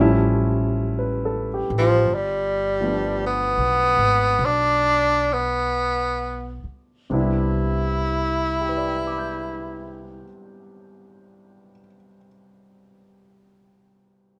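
A grand piano with short sustain and a woody, growly pizzicato upright bass open this intimate, late-night jazz ballad, swinging gently in a club-sized room as the pace slows through its opening stretch. A breathy tenor saxophone enters at 1.8 seconds, up front and clear with vibrato and a soft subtone, carrying the melody over chords that move from A7b13 to G7 and settle on Cmaj9. The bass stops at 10.2 seconds with the saxophone just after, and the piano plays on alone until 14.4 seconds.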